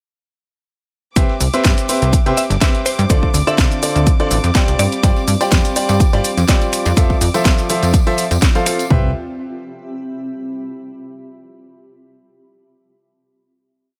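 From 1.2 seconds, a punchy, overdriven house kick with floor toms drives this feel-good, uplifting piano house piece at 124 BPM in C major, together with a cracking snare, bright hats, cabasa and finger snaps, a very quiet, gritty looped breakbeat with shaker, and a funky, syncopated analog bass up front. A clear concert grand plays dotted-rhythm chord riffs over Cmaj7, Dm7, G7sus4 and Fmaj7, while a soft, intimate chamber string section holds a high note with vintage sampler grit and sidechain pumping in the background. A crystalline wavetable pluck adds brief chorused, tape-echoed phrases from 2.4 seconds, a tambourine sits close and dry in the distance, and a cloudy granular pad drifts on through the final Cmaj7 chord to 10.8 seconds, all within a digital ambience.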